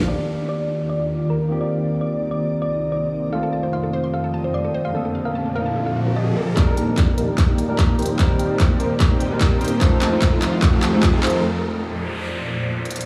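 A hard-clipped electronic kick drum sits up front from 6.6 seconds, anchoring the half-time build-up of this euphoric, playful future bass clip taken from a longer piece. Before it lands, a round, tine-like FM synth pluck carries a gentle melody over a barky, clean electric piano accompaniment, while a shimmering, ethereal pad with chorus and built-in reverb holds sustained harmony through Ebmaj7, Cm7, F7 and Bbmaj9. A lush, punchy unison pluck adds arpeggios in the background, and a riser with a noise sweep starts at 4.8 seconds. In the second section a thick, detuned supersaw riff arrives under a filter sweep, joined by a trap kit with crisp hats, handclaps and crash, and drum fills push toward a break at 11.4 seconds. Sidechain pumping and dub echo run through most of the synth and piano parts, and the whole mix sits in a huge ambient reverb, as if played on a big sound system in a bare room.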